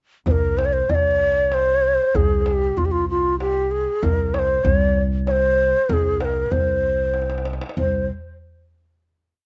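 This short, complete piece is recorded outdoors with little reverb and a dull top end, giving it a close, dry sound. It is an Arabic maqam ensemble piece in maqam bayati on C, moving at 96 BPM in a straight 3/4, and the mood is soulful and longing. A low ney carries the modal melody up front, its breathy, mellow cane tone shaped by soft attacks, vibrato and ornaments, with a slapback echo trailing each phrase. An upright bass, plucked with a woody, acoustic sound, sits up front on a low C and doubles the low drum strokes. A deep metal-shell darbuka played with soft hands keeps a crisp pattern of low and high strokes, then plays a short fill from 7.1 s. From 7.8 s the piece closes on a final note.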